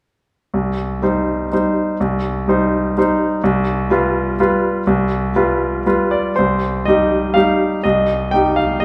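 Classical piano waltz in C minor with a bittersweet, nostalgic mood, taken from a longer piece: a solo grand piano, tuned to A4 = 436 Hz, plays in 3/4 at about 123 BPM with uneven, rubato beats, its brilliant, intimate, up-front tone carrying audible action noise and short sustain inside a wet recital-hall reverb, moving from C minor to G7 over C at 3.4 seconds before a new section returns to C minor at 6.4 seconds.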